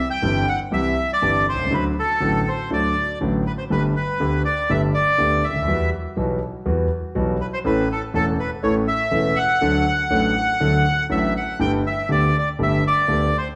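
Playful and nostalgic, this rubato tango excerpt in G major at 121 BPM places a reedy, boxy bandoneon melody up front over an intimate, vintage-sounding concert grand piano accompaniment with deep bass and audible action noise, the band playing live together in a wet stone room with its highest frequencies trimmed away.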